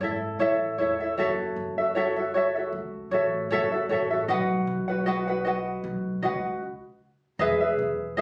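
A light, fingerpicked tenor ukulele sits up front over a woody, thumpy pizzicato upright bass in this sunny, carefree acoustic pop snippet at 77 BPM with a gentle sixteenth-note swing, moving through A, F#m7 and B before a stop from 6.6 to 7.4 seconds and a landing on Emaj7, all caught on a phone in a club room with moderate reverb as part of a longer piece.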